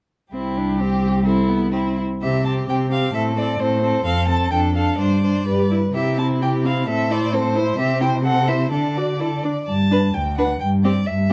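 Graceful and lively, this short extract from a quick classical-period movement for string quartet moves at 129 BPM in 2/4 with a rubato feel, beginning in C major and turning toward G major from 7.8 s. All four players enter together at 0.3 s and play through to 11.3 s. A rich, expressive first violin carries the melody with vibrato and portamento, while a clear, focused second violin traces a supporting line beneath it. The viola fills in the accompaniment with a rich, expressive tone and sliding portamento, and the cello anchors the bass, sitting up front and loudest in the blend. The harmony passes through A minor, F and a suspended G before cadencing, then moves through D to G and a closing C over G. A moderate large-studio reverb and a dark, warm production give the ensemble a rounded sound.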